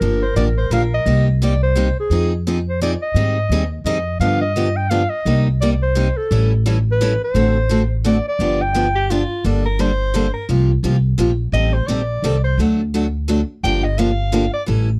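A breathy clarinet with scooped notes and vibrato carries the melody over bright, boxy picked steel-string acoustic guitar and a woody, thumpy gut-string upright bass in this bittersweet, fiery jazz manouche swing at 172 BPM in 3/4, while a distant, roomy soprano saxophone makes a brief early entry and then, after the clarinet stops at 9.1 seconds, takes a mellow solo as the key moves from C minor to G minor at 9.5 seconds, captured in a dry, close 1970s-style studio sound.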